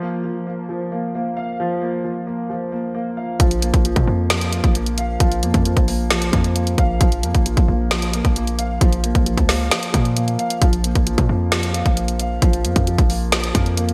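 Hard-hitting and eerie, this half-time trap excerpt at 133 BPM opens with a dark, mellow grand piano playing alone, intimate and up front with audible action noise, a lush chorus and a low-pass filter softening its edges. At 3.4 seconds a punchy, heavy 808-style bass with a sine body, noise layer and fast, decaying attack arrives together with a tape-warm electronic trap kit of hard-clipped kick, woody snare and warm hi-hats, sitting up front under gated reverb. The whole is framed by bright 1980s-style digital production and light digital ambience.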